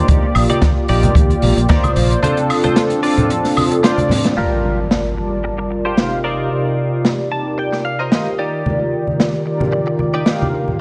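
Nu-disco with a sleek, sensual swing, this excerpt rides on round, detuned synth brass pumping with chorus and delay, a twangy clean electric guitar riff roughened by 12-bit sampler grit, a punchy envelope-filtered fingered bass and boomy kick heard only in the opening two seconds, an up-front jazz kit of hi-hat, medium-tuned snare and woodblock, distant low-tuned congas, and an electronic impact at 4.4 seconds ahead of a bright guitar fill at 7.0 seconds.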